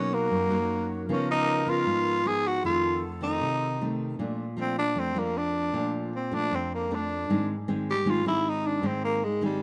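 In a straight 4/4 feel, this breezy, sunny bossa nova fragment places a growling, raspy tenor saxophone up front on the melody with scooped notes and a soft attack, moving into a jazz-style solo at 4.2 s, while a fingerpicked classical nylon-string guitar accompanies throughout and a breathy, hollow flute section with vibrato adds a tongued second line in the background until 3.9 s, all set in a lightly reverberant room.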